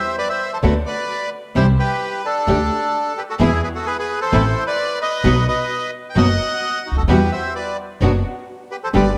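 A tense, dramatic tango fragment with a loose rubato feel. It opens with a reedy, bright bandoneon up front carrying the melody alone, before the rest of the ensemble joins at 0.6 seconds: a fingerpicked classical nylon-string guitar in accompaniment, a woody pizzicato upright bass, and a bowed string section placing soft-attack sul tasto stabs with vibrato, intimate and in the background. A wet spring reverb sets the sound further back in the room.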